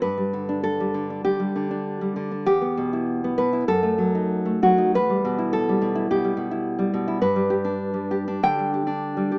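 Wistful and melancholic, this short excerpt of a romantic solo classical guitar piece moves in a rubato 4/4 at around 90-107 BPM, with a fingerpicked nylon-string guitar, full-bodied and up front with fresh strings and audible finger squeak, ranging from E2 to G5 over chords that drift from G through Em and D#dim/F# before settling back on G at 7.2 seconds, all set in light reverb and small-room ambience with the rough, small-speaker sound of a home demo.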